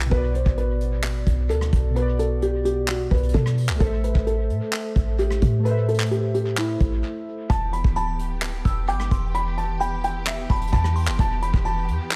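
Hip hop trap cut from a longer piece, brooding and hard-hitting at 130 BPM with a half-time feel in E minor: a felt-muted upright piano carries the dark, intimate melody with audible action noise and dub echo over a deep, boomy 808-style bass and a soft brush drum kit with tight kick, hi-hat, handclaps and rim clicks, also treated with dub echo, while warbly lo-fi synth keys with chorus drop out at 7.5 seconds, when a lush bowed string section takes up sustained chords and a glassy FM synth bell enters in the background at 8.0 seconds, the mix sitting in a small, echo-heavy room.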